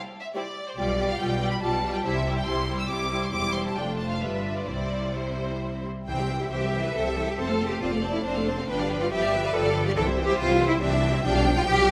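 A quick triple metre at 140 BPM, loosened by rubato, drives this graceful, cheerful classical-period movement for string orchestra in C major, a short passage cut from a longer piece. The first violins open at 0.2 s with a rich, somewhat distant melody, joined at 0.4 s by the second violins on a supporting line and by violas whose clear, intense accompaniment sits close. At 0.8 s the bass arrives: a bright, focused cello section over a double bass section placed up front. All five sections play bowed with vibrato, forming a lush ensemble, and the harmony circles C and G7 before the second half brings in F. A recital hall reverb gives the strings a wet acoustic, and lossy compression artefacts colour the sound.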